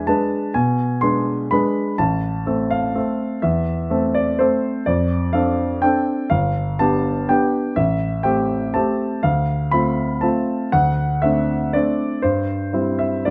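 Classical piano waltz in A minor at 123 BPM, elegant and wistful, where a clear, present grand piano plays solo and up front across a range from G1 to C6 with rubato and uneven beats, moving through chords such as Am, Dm7/F, G7 and D7 to settle on C/G at 12.2 seconds, captured with close, detailed microphones and light reverb in this 13.3-second excerpt cut from a longer piece.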